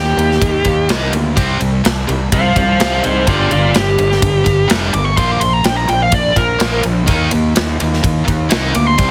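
Heavily compressed for a loud, radio-style sound with light reverb, this driving, heavy hard rock excerpt moves at 126 BPM in a straight 4/4, tuned to A4 = 442 Hz. An up-front, smooth overdriven lead guitar solos throughout over a biting, double-tracked rhythm guitar riff and a round, punchy fuzz bass. A big acoustic rock kit in a big room, with bright cymbals, ride, a medium-tuned snare and punchy kick, joins at 0.2 s as the harmony moves through Eb, C5, G5, Bb5 and Eb5.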